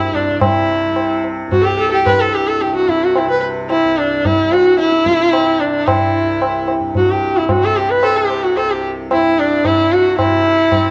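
Radiant and meditative, this short Hindustani classical excerpt in raga Yaman moves at 111 BPM in a straight 5/4, cut from a longer piece. An up-front bowed sarangi carries the melody with a biting, gliding tone, light vibrato and portamento, its sympathetic strings ringing, over a softly plucked, buzzing tanpura drone that shimmers low in the mix, while low-tuned tabla with a short ring enters at 0.1 seconds. A moderate scoring-stage reverb surrounds the players, and a worn cassette-tape quality adds warbly pitch drift to the sound.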